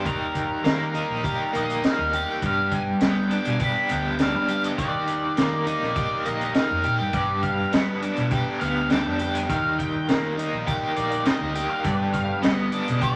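An overdriven electric guitar sits up front, its compressed, double-tracked riff pulsing through tremolo across this trippy, mysterious psychedelic rock excerpt at 102 BPM in a straight 4/4. Above it, an octave-fuzz lead guitar carries the melody with a dark, distorted tone shaped by wah, entering at 0.1 seconds. A hollow-body short-scale bass, played with the fingers, gives a round, punchy low end through an amp, while a vintage acoustic kit adds a punchy kick, a high-tuned snare and hi-hat with a rolled-off top. In the background, a bright, reedy tonewheel organ holds clean sustained chords with audible key click, turning through a slow rotary speaker. The harmony alternates between Ebadd9 and G every few seconds, and moderate studio reverb and a layer of vinyl crackle give the recording an aged, hazy atmosphere.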